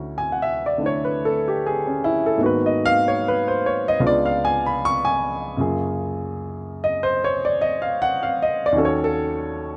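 A warm baby grand piano plays alone, present and polished up front with light reverb, in a smoky, wistful jazz ballad at 75 BPM in a swung 4/4, moving through Dmaj9, G#m7, C#7b9, F#maj9 and D#m7b5 across a range from C#2 to C#6 in this 9.8-second cut from a longer piece.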